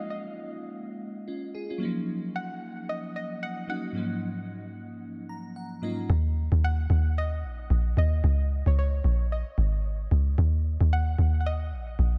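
A swung 4/4 groove at 112 BPM sets up this deep, hypnotic amapiano passage in Eb minor, cut from a longer piece. A crystalline FM electric piano opens the accompaniment with sparkling, full-bodied chords softened by chorus and a low-pass filter, moving from Db69 through Ebm7 to Ab13sus4 before a fill between 5.0 and 6.1 seconds. Above it, a soft, round pluck carries a gentle melody in a narrow upper register, its detuned, wave-folded tone darkened by filtering and trailed by analog delay. At 6.1 seconds the electric piano stops and the drop arrives with a deep log drum bass, dark and percussive with a fast attack, sitting up front as the harmony shifts through Ebm, Dbsus2 and Eb5. Light reverb lends the mix a digital sense of space.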